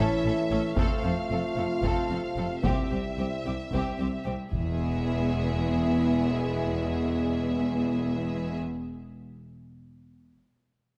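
A moderate scoring-stage reverb gives a spacious sheen to this heroic, adventurous cinematic excerpt, cut from a longer epic orchestral score in 7/8 at 225 BPM counted in eighths and moving through A, F, C and E chords. Two bowed violin sections carry a smooth melody and a second line above a dark, expressive viola accompaniment with portamento. A distant French horn section and mellow, soft-attack trombones hold sustained chords in the background, while lush cello and double bass sections anchor the bass; a taiko ensemble with heavy sticks drives from 0.8 to 5.5 seconds, and round timpani on soft mallets enter at 4.5 seconds.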